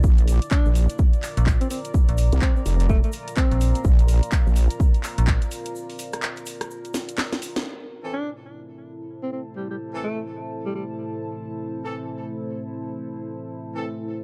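A warbling, nostalgic tape-like pad opens this aggressive, gritty bass house excerpt at 126 BPM in A phrygian, joined at once by a punchy electronic kick, a heavy detuned wobble bass, a metallic FM bass and a grainy background tube shaker, with a house kit of cracking snare, handclaps, hi-hat and rim click entering at 0.2 s, a smooth, subtoned alto saxophone with delay at 0.5 s, and a deep, moody analog pad at 1.0 s, before a break and drum fill lead at 7.7 s into a second section where an up-front, bright horn section plays delayed stabs as a filter sweep runs over the pad, all in a dark, sidechain-pumped production.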